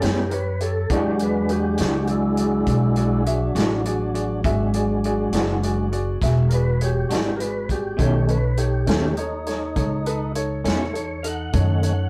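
This gritty, rollicking slow blues in 12/8 moves at 68 BPM in E mixolydian, with a tonewheel organ soloing up front in a smooth, clean voice marked by key click, chorus vibrato and a stopped rotary speaker, over chords of A9, E9 and then B9 at 8.0 seconds. Beneath it, a woody, thumpy pizzicato upright bass on gut strings, an acoustic drum kit with hi-hat, punchy kick and medium-tuned snare, a clear, slightly detuned upright piano, and a twangy, slightly broken-up electric guitar with tremolo through a small old amp fill out the band, the guitar dropping out at 10.8 seconds. The rough rehearsal-room recording carries saturation, a faint mains hum and wet studio reverb, and this cut is taken from a longer piece.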